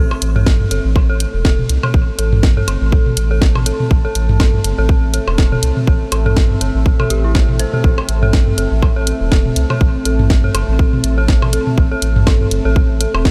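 A tight electronic kick sits up front in this sparse, hypnotic minimal techno excerpt, with light reverb around the mix and the whole 13.3 seconds resting on A minor at 122 BPM in 4/4 with a 56% swing on the sixteenths. A round analog bass with a sine-like, fast-attack tone holds the low end from the start, pumping under sidechain, while a deep, moody pad of detuned sawtooth unison and a sub octave sustains above it with chorus, its own built-in reverb, a moving notch and the same pumping motion. A garage drum kit adds hi-hat and a cracking snare from 0.2 seconds, and tape-toned electronic percussion blips and toms, re-recorded in a small room, pass through tape echo. An eerie, inharmonic synth bell, vintage FM in character and warbling with chorus, carries the riff between E4 and C5, its decaying notes given delay and sidechain pumping. The effect is a dark, looping groove built on a single chord, cut from a longer piece.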